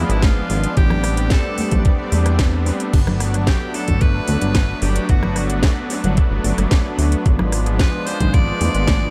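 A raspy, gritty tenor saxophone carries the melody with light vibrato and a forceful pop edge, trailed by an analog delay, in this sunny, feel-good nu-disco excerpt in a straight four-four groove. Beneath it, a glossy, retro synth bass built from pulse and sawtooth waves sits up front with a plucky filter and mellow chorus, while a thumpy, sampler-style electronic kick lands just as prominently. A house drum kit with a cracking snare, metallic hats, rim clicks and crash cymbal is layered in with dub echo, and very quiet, soft-handed congas add a faint, bright skin tone. A detuned, warbling vintage pad with a slow attack and chorus holds the harmony under dub echo, and a pure, floating string section played sul tasto sits far back, pumping with sidechain compression. The chords move from a rootless E7b9/G# through Am11 to Gmaj7 and back, and the excerpt has a dry, echo-heavy mix.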